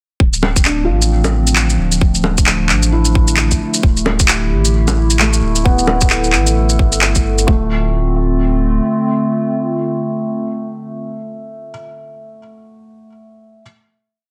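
A felt-muted upright piano drifts through this short future garage piece, its scattered notes soft and intimate, carrying audible action noise, a vintage 12-bit sampler grit and tape echo, and it keeps sounding until 13.6 seconds. Alongside it, a warbling, tape-like pad holds dark, nostalgic lo-fi chords with chorus and its own reverb, pumping against the kick, while a round sine sub bass plays long gliding notes. The beat at 132 BPM in 4/4 swings its 16ths, with a tight, muffled two-step kick up front and a skittering, shuffled pattern of shaker, low bongo and handclaps. In D dorian, the harmony moves from Dm7 to G69/D and back, and at 7.5 seconds the groove gives way to a final Dm7 chord held by the pad and piano. The mood is rainy and wistful, set in a light reverb and a dense, heavily limited modern master.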